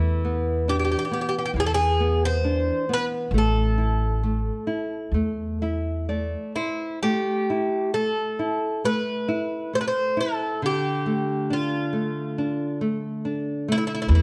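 A fado-style ballad in A minor, this mournful, longing excerpt moves at a slow 67 BPM in 4/4, its uneven beats and rubato feel giving the pulse a free, breathing quality, and it is tuned slightly low, with A4 at 435 Hz. The Irish bouzouki carries the melody in a narrow middle range, its picked double strings ringing with a metallic, up-front sparkle. A small-sounding nylon-string guitar fingerpicks the accompaniment throughout and steps forward with a fill from 5.1 to 7.0 seconds. The upright bass plays pizzicato on steel strings, giving a woody, dark low end until 6.3 seconds, then returning only in the final instant. The harmony moves from E5 and A5 toward a D minor chord at 10.6 seconds across two matching phrases. Close, detailed microphones and light reverb keep the acoustic instruments intimate and present.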